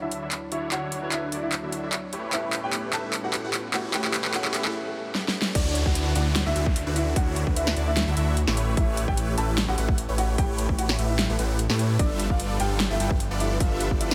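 A half-time future bass groove at 149 BPM in 4/4 and D major opens this bright, euphoric excerpt, with a dubstep drum kit of huge snare, metallic hats, handclaps and crash driving a build-up in which a filter sweep works over the phased, lush supersaw chords, a barky, lightly overdriven tine electric piano plays accompaniment, and a very quiet riser and downlifter add motion before a short break at 4.7 seconds. At 5.6 seconds the electric piano drops out and the drop arrives, as a hard-clipped, overdriven electronic kick and a thick, detuned saw bass with chorus and sidechain pumping join up front. Throughout, a dark, worn baby grand piano with audible action noise carries the melody through delay and a low-pass filter, over an airy, breathy pad holding soft sustained chords in light digital reverb.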